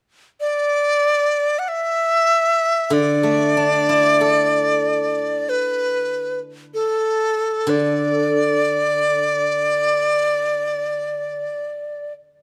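A breathy bamboo dizi with a buzzing membrane carries the graceful, pastoral melody in free time from 0.4 seconds, its tongued, unsteady line colored by vibrato and heard close and up front, while a bright, silvery steel-string zither played with fingerpicks enters at 2.9 seconds with ringing accompaniment in this traditional Chinese chamber excerpt, set in light reverb and cut from a longer piece.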